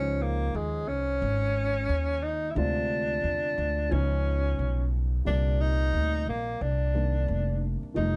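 A breathy tenor saxophone carries the melody in a jazz style, its whispered subtone, vibrato and scooped notes set in plate reverb, over a cool, warm hip hop groove at 89 BPM with a lightly swung sixteenth feel. A dark, vintage-sounding concert grand piano accompanies with audible action noise and its own plate reverb, while a woody pizzicato upright bass sits up front beneath it. The 8.2-second snippet, cut from a longer piece, moves through Dbmaj9, Dm7b5, Db9 and Cm9 with a dark, warm production and light reverb.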